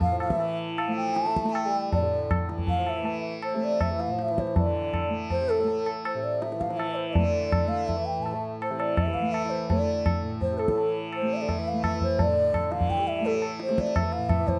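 This Hindustani classical passage, cut from a longer piece, sits in raga Bhairavi on A, tuned to A4 = 441 Hz, and carries a meditative, solemn mood. It moves in 7/4 with a straight feel, quickening from 155 to 174 BPM, and shifts into a new section at 4.6 seconds. A bass bansuri leads the melody between A4 and A5, its bamboo tone airy and unsteady, with vibrato, tongued notes and lifted highs. Underneath, the tanpura holds a softly plucked drone from A2 to A3, bright, buzzing and shimmering. The high-tuned tabla rings close, dry and up front. From 0.1 seconds a warm bassoon adds a classical-style second line in the same low register with light vibrato, all set in a moderate studio reverb with a gently rolled-off top end.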